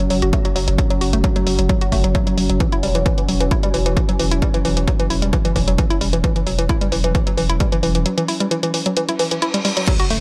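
A woody, wave-folded pluck riff and a nasal, evolving analog drone open this driving, intense peak-time techno excerpt at 132 BPM, both chorused and pumping against the sidechain, with the pluck up front over an F#5 chord that gives way to an open, chordless stretch from 2.6 seconds. A thick, saturated sub bass with overdrive and a low-pass filter sits under a dry, punchy electronic kick, while an analog drum machine adds hi-hat and crash cymbal that also pump. A reverse cymbal rises in the background from 9.2 seconds and lands on an impact at 9.9 seconds.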